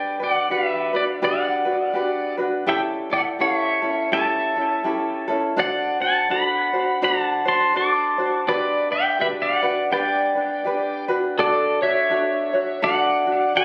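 Hawaiian music with a languid, relaxed swing at 83 BPM in G major, this short cut from a longer piece sets an up-front electric pedal steel guitar, clean and compressed with tape echo, playing the melody with fingerpicks, slide and volume swells. A bright, light acoustic tenor ukulele, also up front, fingerpicks the accompaniment through Gmaj7, A7, D7 and back to Gmaj7 before the harmony moves to Dmaj7 at 11.4 seconds for a brief new section. Both parts play throughout the 13.6 seconds, heard as if caught on a phone in the room, with moderate echo-chamber and club reverb, studio ambience and compression.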